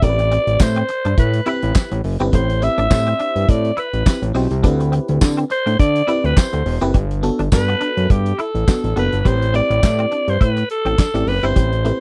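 A raspy, growling alto saxophone carries the melody up front with slapback echo in this funky, late-night slice of early-eighties boogie funk, lightly swung on the sixteenths and cut from a longer piece. Beneath it, a glassy, bell-like FM electric piano with chorus plays the accompaniment, a bright, twangy clean electric guitar repeats a riff through ensemble chorus, and a thick, saturated analog bass sits up front beside a damped 70s drum kit with tight kick, fat snare, hi-hat and handclaps. A jingly tambourine joins at 0.6 s as the harmony moves from Am9 through D13sus4 to Gmaj9, reaching a second section at 9.3 s, all captured in a dry, close 1970s-style studio sound.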